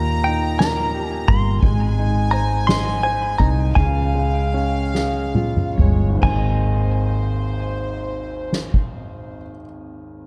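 A clean, compressed electric guitar recorded direct carries the melody high in its range with a tape echo, over a tender, romantic pop ballad in Ab major, moving in a slow 6/8 at 44-58 BPM that slows down between 1.6 and 6.2 seconds. A floating, sul tasto violin section plays a soft-attack second line, an intimate grand piano with audible action noise and long sustain fills the accompaniment, and a growly, round fretless bass sits up front beneath them. A soft-mallet drum kit with a boomy kick, fat snare and dark cymbals plays a fill from 4.9 to 6.2 seconds, and the piano rings on alone until 10.3 seconds in this dark, small-room excerpt cut from a longer piece.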